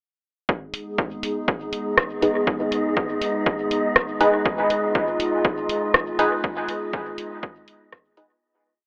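A punchy, tape-warm four-on-the-floor kick drives this hypnotic, hazy dub techno piece at 121 BPM in G# dorian from 0.5 s. A deep house kit adds programmed hi-hats and a rim click soaked in dub echo, while a warbling, nostalgic lo-fi pad holds a G# minor chord through chorus, reverb and sidechain pumping, joined by a breathy, wind-like noise layer sustaining a high note. From 2.2 s, sparse, dark, detuned chord stabs echo through a phaser, and the whole mix has a narrow telephone-like tone in a light digital ambience before fading out from 5.8 s.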